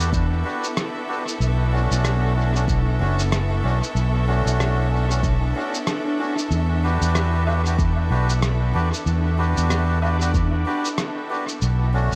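Distant, bowed chamber strings hold sustained Em7 and Bm7 chords from the start, while a reedy, nasal melodica drops stabs into dub echo and a growly, up-front fingered electric bass anchors the low end beneath muffled, overdriven electronic cabasa, rim click and woodblock that also carry dub echo. This hazy, meditative ambient dub fragment in E minor moves at 94 BPM with a 16th-note swing. A deep, layered electronic kick enters at 0.1 seconds and stops at 10.5 seconds, and a reversed, granular backwards swelling texture sits very quietly underneath from 0.2 seconds, all within an echo-heavy mix with light reverb, cut from a longer piece.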